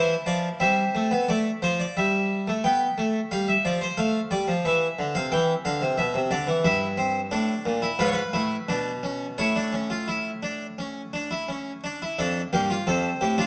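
A classical, baroque-style fugue in three voices unfolds on a solo harpsichord, its serious, driving character carried by a steady, straight pulse in four. The instrument is a Flemish-style harpsichord with three sets of strings, sounding airy, plucked and brilliant, with a full body that sits up front and spans from deep bass notes to bright upper registers. The harmony moves through a chain of chords, passing through diminished sonorities before arriving on an A major chord around 9.4 seconds, then turning to a D minor chord near 12.2 seconds as the passage is cut off. Close, detailed microphones capture the attack of each note, while a moderate recital hall reverb lends the sound a sense of space. This brief fragment, lasting about 13.5 seconds, is taken from a longer piece.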